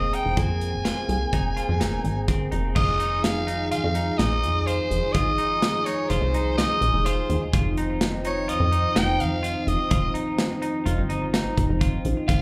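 A raspy, gritty soprano saxophone carries the melody up front in this tense, driving progressive instrumental in 5/4 at 126 BPM in F minor, heard live through a club PA with plate reverb, slapback echo and delay on the horn, over a deep, detuned analog pad with chorus, bright clean arpeggios from a semi-hollow electric guitar, a punchy, plucky analog bass and a polished modern studio drum kit with a tight kick entering at 0.1 s, as the chords move from Abadd9/F to Fm7 at 2.8 s and Cm/F at 7.5 s in a fragment cut from a longer piece.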